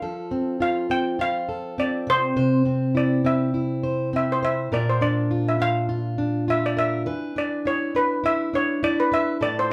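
Acoustic pop with a carefree, sunny, lightly swung feel, where a bright, shimmering steel pan struck with hard rubber sticks carries the melody up front over a full-bodied, fingerpicked plugged-in steel-string jumbo acoustic guitar, both playing throughout this short cut from a longer piece as the chords move from F to C and then Bb to E5, captured live in one room with a wet studio ambience.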